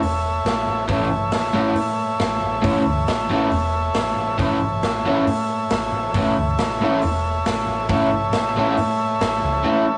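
A rough, cassette-taped rehearsal-room recording in a small, wet booth opens this rowdy garage rock excerpt, cut from a longer piece, pushing along at 137 BPM in A major. A buzzy, overdriven combo organ with light vibrato holds sustained chords up front, while a round, foam-muted picked bass and a gritty, saturated drum kit with a punchy kick and pumping stone-room sound drive underneath. At 0.9 seconds a bright, double-tracked overdriven guitar riff comes in and sits up front.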